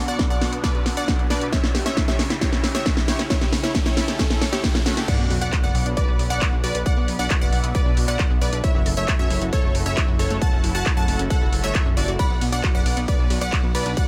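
A straight 4/4 pulse at 135 BPM drives this emotional, euphoric uplifting trance passage in B minor, where a distorted, up-front electronic kick and a layered techno kit with cracking snare, hats, handclaps, crash and ride push through a build-up with a drum fill, a background riser and sub drop, and a filter sweep on the gritty, ring-modulated unison pluck arpeggios with digital delay. At 5.1 seconds the drop lands with an impact, and a fat, detuned sawtooth analog bass pumps under the punchy supersaw stab melody, a second stab line with subtle chorus, and a lush, sustained unison pad coloured by chorus and phaser. A crystalline FM bell enters at 12.2 seconds, all in a dry mix.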